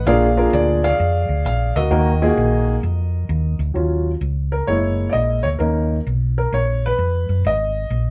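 This short cut from a longer piece has the moderate ambience of a studio room, with a small band playing live together. It is uptempo gospel in a swung four, and its mood is solemn and soulful. A felt-muted upright piano carries the melody at the opening, its tone soft, mellow and vintage, with the thin felt and the noise of its action clearly audible, until it drops out at 3.6 seconds. Underneath, a hollow-body short-scale electric bass, played with the fingers, sits up front with a dark, round, amped sound through the whole passage. A second upright piano, woody and natural with its own intimate action noise, accompanies from the start and takes a solo at 3.8 seconds. The harmony moves from Bb7 to Ebm, then through Ebm7, Gb7 and Bmaj7 before landing on Ab5.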